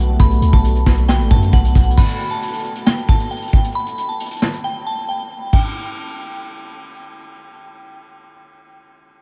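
A half-time 4/4 groove at 135 BPM, played on an up-front vintage brush drum kit with dark cymbals and a tight kick, drives this eerie, brooding hip hop and trap excerpt, which opens on a Bm7 where a boomy sine 808-style bass and a detuned sawtooth ambient pad sound for roughly the first 2 seconds, while a crystalline FM synth bell melody, softened by chorus and diffuse delay, continues alone after the drums stop at 5.6 seconds.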